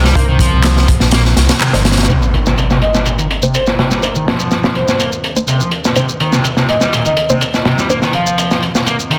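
Raw and swaggering, this breakbeat cut is driven by a saturated, up-front drum kit with a tight kick, a distorted electric guitar riff roughened by vintage sampler grit, tape echo and filter sweeps, and a very quiet, detuned analog pad holding a Cm9 chord. An overdriven, round fingered bass plays only until 2.0 seconds, while layered electronic handclaps and shaker join in and a muted, phased dub chord stab with tape echo sits in the background. At 2.1 seconds an electronic impact marks a new section, and at 2.8 seconds a woody marimba melody enters with a band-limited, small-speaker tone, all within a dense, heavily limited master with light reverb.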